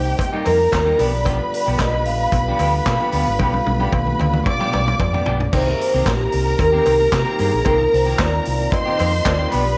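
Disco at 113 BPM in 4/4 with a straight, sultry and danceable feel, this short cut from a longer piece sits in C minor and moves between Cm7 and G7 chords. A ringing, metallic vibraphone played with soft mallets carries the melody with a slow motor vibrato, while a lush, bowed violin section adds a smooth second line touched with analog delay. A mellow French horn section holds sustained chords in the background, and a round, punchy hollow-body short-scale electric bass sits up front with a dark, amped tone. A clean, picked semi-hollow electric guitar fills out the accompaniment, and a vintage acoustic drum kit with dark cymbals, a tight kick, handclaps and toms drives the groove, joined by a very quiet, close and dry cowbell. A drum fill from 3.4 to 5.5 seconds leads into a new section, all set in light reverb and small room ambience.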